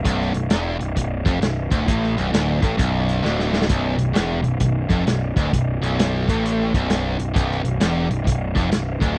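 A swung 4/4 groove drives this raunchy blues rock and southern rock power-trio excerpt, with a growly fuzz-picked bass and a bright, double-tracked distorted guitar riff sitting low and up front over a Bm7 chord. The vintage drum kit, muffled and lo-fi with a tight kick and medium-tuned snare, plays hi-hat, kick and snare and breaks into a fill at 3.2 seconds. The sound is dry and close, like a 1970s-style studio recording.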